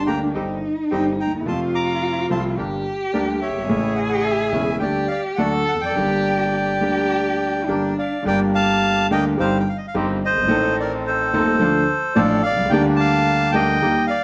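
A rubato 4/4 tango at 107 BPM in G minor, this passionate, melancholic excerpt from a longer piece sets a reedy, airy bandoneon melody with plate reverb up front over a deep-bassed, vintage-toned grand piano accompaniment, with a bowed cello adding a second line full of vibrato and portamento until 8.2 s, while a band-limited bandoneon plays background stabs through slapback echo, all in a moderate studio room.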